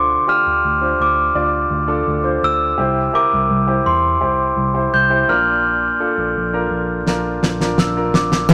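A rough rehearsal-room recording in a moderate stone room, with reverb lasting about 1.0 seconds, frames this short cut of hopeful, piano-driven pop at 84 BPM in a straight 4/4. A glockenspiel played with rubber mallets carries the melody up front, its bell-like ring mellow and soft. Beneath it, a clear concert grand piano plays the accompaniment with audible action noise and long sustain, while a clean tine electric piano, run through a combo amp and a phaser, supplies the bass. The chords move from Dm7 to C to Bb, and at 7.1 seconds a dry 70s drum kit with a fat snare, tight kick and dark cymbals enters with a fill. At 8.5 seconds a full-bodied, picked steel-string acoustic guitar arrives with a riff, complete with finger squeak.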